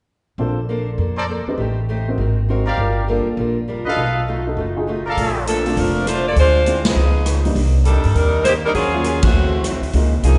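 Big band swing with a joyful, energetic feel, cut from a longer piece and moving at a brisk swung pace. A boxy, picked acoustic guitar, a woody upright piano with long sustain and a dark, pizzicato upright bass sitting up front all play from the start, laying down rich extended harmony. A brilliant trumpet section with light vibrato punches out stabs from 1.2 to 5.4 seconds. At 5.2 seconds the big-band drum kit enters with dark cymbals, a punchy kick and a medium-tuned snare, and moments later a mellow saxophone section takes the melody up front while the band hits accents at 6.8 and 9.2 seconds. The whole ensemble sits in a moderate concert-hall reverb that gives the sound a roomy, slightly soft-topped natural character.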